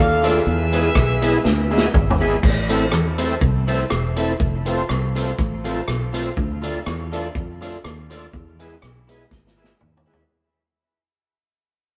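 A lightly swung 122 BPM ska groove in A harmonic minor drives this mischievous excerpt, where a mellow horn section states a brief dub-echoed melody until 1.9 seconds over a very quiet clean guitar riff, a round, foam-muted fingered bass, a twangy, slightly broken-up guitar with dub echo, gritty overdriven organ stabs through chorus vibrato and a slow rotary speaker, and a punchy vintage drum kit with dark cymbals, all in a wet stone room, with drum fills closing each section as the band fades out from 2.4 seconds across an Am, F, Dm, E progression.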